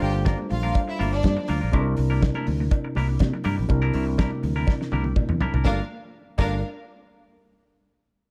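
A dark, lightly reverberant production frames this driving, sultry disco cut in G dorian at 122 BPM, where an up-front fingered bass and a damped, fat-snared 70s drum kit anchor a clean, compressed semi-hollow guitar, a worn, slightly out-of-tune tine electric piano, very quiet high-tuned congas and a metallic cowbell, while a lush, bowed string section with slapback echo appears briefly at the start and returns at 5.6 seconds as a drum fill ends, as the harmony moves from C9 to Gm7.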